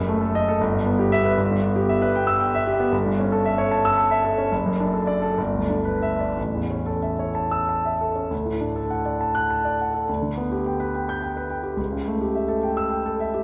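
Moving in a flexible 6/8 with rubato at roughly 58-79 BPM in dotted quarters, this warm, lyrical romantic character piece in D major, cut from a longer work, features a solo concert grand piano with a warm, intimate, polished tone, deep bass and audible action noise, ranging from F#1 to G6 and bathed in the wet 1.8-second reverb of a scoring stage heard from further back in the room, as its diminished opening harmony settles through A7/G and D/F# before a new section begins at 8.3 s on D and closes on A7/C# at 11.8 s.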